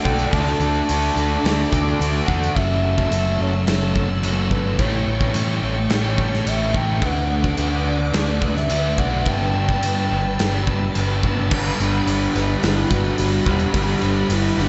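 Wistful and dreamy, this shoegaze and dream pop rock piece moves at 107 BPM in a straight 4/4, with a pure, breathy sine lead carrying the melody through chorus and analog delay over a vintage, warbling organ-string pad. Underneath, a thick fuzz guitar with lush chorus and an overdriven semi-hollow guitar with reverse reverb play riffs throughout, while a dark, lo-fi, double-tracked garage guitar riffs only until 2.6 seconds and again from 11.5 seconds. A punchy picked bass, a big acoustic drum kit with bright cymbals, and a jingly tambourine drive it all, with the whole mix soaked in church reverb as the chords drift from D to a closing Gmaj7.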